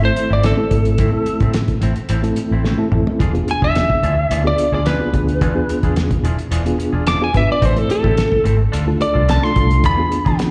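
Straight-eighth soul blues in A harmonic minor at 108 BPM, this brooding, soulful passage is cut from a longer live performance heard through the venue's PA, with light reverb, small room ambience and a recital hall tail. A lightly driven lead guitar carries a solo from the start, its dark, slightly broken-up, picked and compressed tone sitting up front with slapback echo as it ranges from A4 to D6. Beneath it, a reedy, clean electric piano pulses with fast tremolo through its built-in speakers. A second electric guitar through a small old amp adds twangy, fingered stabs with subtle chorus and slapback echo. A vintage foam-muted fingered bass gives round, punchy low end, while a cloth-damped, muffled drum kit with a fat snare, tight kick and rolled-off top comes in at 0.2 seconds and plays a fill at 2.6 seconds. The harmony moves from Am to E7b9, then back through Am and Dm before returning to E7b9 near the close at 9.8 seconds.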